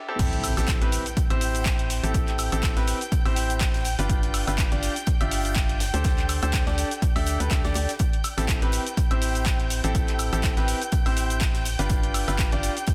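A clear, intimate baby grand piano riff with audible action noise, delay and sidechain pumping leads this soulful, energetic piano house excerpt at 123 BPM in A minor with a swung 16th feel, as a punchy, tape-warm electronic kick, an analog drum machine of handclaps, hi-hat, shaker, woodblock and crash cymbal, and a very quiet, airy acoustic kit of hi-hat and snare drum join from 0.2 s alongside a hollow, organ-like FM bass and lush, bowed strings in the background, both pumping, over Am7, G7 and D7sus4 chords, with a faint electronic impact until 2.1 s and a dense, heavily limited master.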